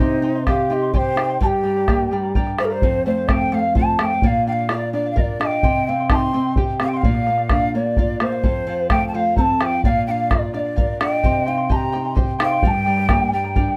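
A lilting 6/8 pulse at 86 dotted-quarter beats per minute carries this melancholic, wistful Andean folk fragment, with a deep, saturated bombo entering at 0.5 seconds and sitting up front. Two large wooden quenas sit on top, one hollow and airy with a crisp, chiffy attack carrying the melody, the other breathy and bright with a soft attack and expressive vibrato on the second line. Beneath them a shimmering fingerpicked charango with double strings and a fresh, squeaky fingerpicked nylon-string guitar outline chords such as Cm, Gm, F and Bb in a close, detailed room with light reverb.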